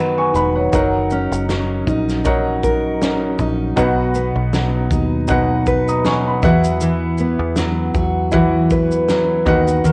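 This home recording on cassette has a homespun character, with a moderate spring reverb hanging around the instruments. It is a sunny, easy-going slice of acoustic pop in 4/4, cut from a longer piece, with a gentle swing on the sixteenth notes. A full-bodied, fingerpicked steel-string acoustic guitar sits up front beside a woody upright piano, and both carry the accompaniment through the whole passage with a tape-touched glow. Underneath, a round, direct fingered electric bass holds the low end. A loose indie drum kit joins at 0.4 seconds with a punchy kick, a medium-tuned snare and shaker, its gritty, saturated tone and rolled-off top coloured by the tape. The harmony moves from B to F#6, back to B and on to Esus2.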